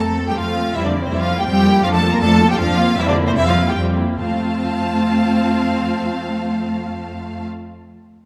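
Quick classical-period movement for string orchestra in F major and 3/4, cheerful and graceful, moving at 144-165 BPM with a slowing between 1.3 and 4.2 seconds. A rich first violin section carries the melody while a bright, focused second violin line and a clear, smooth viola accompaniment sit beneath, all bowed with vibrato. The cellos and double basses anchor the bass over chords of F, C7/F and Bb/F, and the dark production sits in a wet concert hall reverb in this short passage cut from a longer piece.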